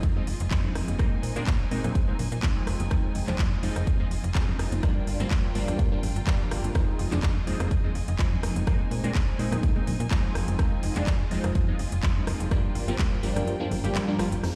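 A punchy, up-front kick and a tape-warm house kit with metallic hats, handclaps and rim clicks open this sensual, funky filtered disco house excerpt at 125 BPM in F dorian, swung on the 16ths, with a snappy, slap-like FM bass, a detuned sawtooth polysynth comp with chorus, phaser and filter sweep, and a clear, focused violin section holding bowed chords, all pumping through sidechain and low-pass filters. Very quiet, close egg shaker and ringing congas add texture beneath chords moving between Fm7, Bb9sus4 and Gm7. The kick drops out at 13.5 seconds, and a brief electronic downlifter closes the passage at 14.4 seconds, all heard as if played on a big sound system in a bare stone room.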